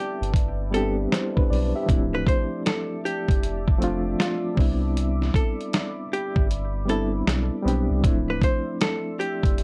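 Lo-fi hip hop at 78 BPM in 4/4 with a swung sixteenth-note feel, this reflective, hazy clip is cut from a longer piece and moves between Cmaj9 and Dm9 chords. A dark, hollow-body archtop guitar carries the melody with clean, picked, compressed tone, while a bright, reedy electric piano sits up front with fast tremolo and cassette tape colouring, playing the accompaniment. Behind them, a deep, moody ambient pad holds sustained chords with a warbling, detuned, vintage character, softened by chorus and its own reverb. From 0.2 seconds, a round, soft dub sub bass anchors the low end, and a gritty, compressed sampler-style soul drum kit, placed up front, lays down a thumpy kick, a medium-tuned snare and hi-hat with the feel of a small room. The kick drops out between 6.5 and 8.0 seconds, and light reverb with cassette tape texture ties the mix together.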